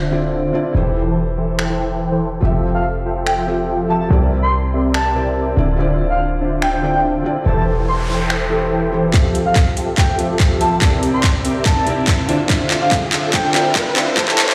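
Bright and lush, this future bass cut from a longer piece moves at 143 BPM in a half-time 4/4 feel in F major, cycling through Dm7, Am7/E, Fmaj7 and C7. Huge, detuned supersaw chords carry the riff alongside a soft, felt-muted upright piano whose mellow, intimate tone keeps audible action noise and a vintage 12-bit grit, while a deep, boomy 808-style bass with a sine body and noise layer sits up front until 9.1 s. A trap kit of finger snaps, handclaps and metallic hats enters at 1.6 s, and a breathy, flute-like synth lead with vibrato and analog chorus sings the melody high above, trailed by dub echo like the piano. A background noise sweep arrives at 7.7 s, and from 9.1 s a build-up takes over: a hard-clipped electronic kick lands up front, the drums play a fill, a filter sweeps across the supersaws, and from 10.1 s a riser climbs in the background. Sidechain pumping breathes through the piano, supersaws, bass and lead, and the mix sits in a lush hall reverb and a stone-room ambience, as if heard over a big sound system in a bare space.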